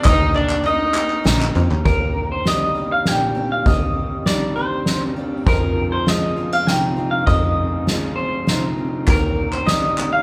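Indie folk in 3/4 with a hopeful, uplifting mood and a building arrangement, played by a band live in one room with moderate studio reverb. A slightly broken-up electric guitar through a small old amp carries the melody up front with tremolo. A dark, sul tasto fiddle with light vibrato and portamento plays a second line until 1.5 s, while a shimmering, octave-doubled twelve-string acoustic guitar sits in the background and crisp, band-limited group handclaps mark the opening. Beneath them, a round, foam-muted electric bass and a soft-mallet drum kit with a boomy kick and fat snare hold the ground, and a woody fingerpicked steel-string acoustic guitar with old strings joins at 1.9 s before the handclaps return at 9.1 s.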